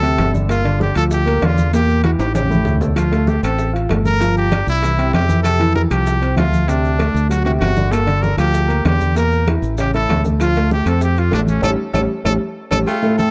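A driving, straight salsa groove in 4/4 rides on low-tuned, soft-handed congas in the background, tight high-tuned bongos and cowbell, ringing metal-shell timbales and agogo bells, grainy maracas, and woody claves that join at 3.0 seconds, with a round, up-front fingered electric bass underneath and drum fills punctuating the phrases. Over a dark, mellow grand piano with audible action noise and long sustain, a bright, vibrato-laden trumpet sings a fiery, passionate pop-style melody, and the band hits an accent at 11.6 seconds. A baritone saxophone with scooped notes slips in for a brief moment at 12.9 seconds as this cut from a longer piece closes, the mix set in light reverb with a warm production.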